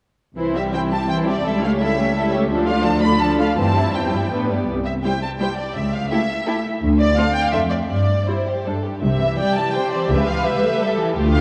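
A string orchestra opens a quick, spirited classical-period movement in triple time at 0.4 seconds, with rich, lush violas and up-front cellos bowing a smooth accompaniment and bass line beneath an even second violin line, while the melody violins enter at 0.6 seconds with a soft attack, expressive vibrato and a smooth top. The graceful, rubato phrasing moves through a short progression that returns to its opening, and at 9.0 seconds a focused, clear double bass section joins the low end. A concert hall's long reverb surrounds the ensemble, and a worn, warbling cassette tape quality adds a drifting pitch to this brief cut from a longer piece.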